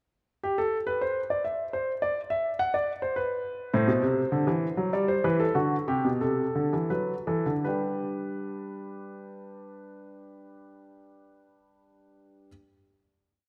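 In a straight 3/4 pulse moving between 78 and 105 BPM, this complete, baroque-style two-part invention in G major has a lively, joyful character. A warm grand piano plays alone from 0.4 seconds, spanning A2 to F#5 and weaving two imitative contrapuntal voices. The opening unfolds over an unharmonized line before passing through an F# chord with a flattened fifth and omitted third, then G and D7, with the tempo slowing from 2.9 seconds. At 7.6 seconds it arrives on a closing G chord that rings out through the instrument's long sustain. The piano sits up front with an intimate, natural tone, and the mechanical noise of its action is audible, all set in a wet concert-hall reverb.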